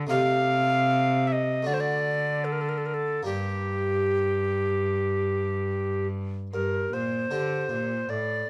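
A dark production with light reverb frames this short, grave fragment cut from a longer baroque-style sonata movement in G minor, played at 76 BPM in a straight 4/4 and tuned slightly below modern pitch at A4 = 439 Hz. Up front, a tenor recorder carries the melody between G4 and F5 with an airy, wooden, tongued tone marked by a clear chiff and a straight, unvibrated sound. Beneath it, a single cellist bows the bass line between G2 and D3, with a rich, reedy gut-string character in period style that sits just as close to the listener. A round, plucked harpsichord in the Flemish manner, using one set of strings, fills out the continuo accompaniment from G2 to G4 and rests lower in the balance. The harmony moves from Am7b5/C to D at 1.7 seconds and settles on Gm at 3.3 seconds, giving the passage an introspective, sombre weight before all three parts fall away at about 8.5 seconds.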